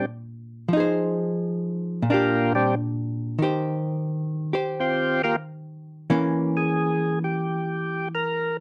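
Jazz at 89 BPM with a greasy, swinging eighth-note feel, cut from a longer piece, where a percussive tonewheel organ carries the melody throughout its 8.6 seconds, its full, thick tone lightly overdriven and turning through a slow rotary speaker with third-harmonic percussion. A miked, amplified archtop guitar sits up front beside it in accompaniment, dark, clean and compressed with a hollow-body character, moving through chords from Bb and Fm7 to Bb69, Eb69 and Edim7. The close, dry 1970s-style studio sound carries just a light touch of reverb.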